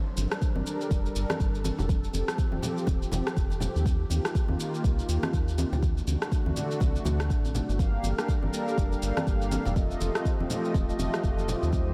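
Lightly reverberant and hypnotic, this driving afro house excerpt rests on an up-front deep electronic kick and a round, dark analog bass that pumps alongside a smooth, warbling vintage pad with chorus, while a tape-toned, layered electronic shaker and rim click ticks over soft-handed, ringing congas set in the background, and detuned, brassy synth stabs with ring modulation, filter sweep and tape echo join at 7.8 s.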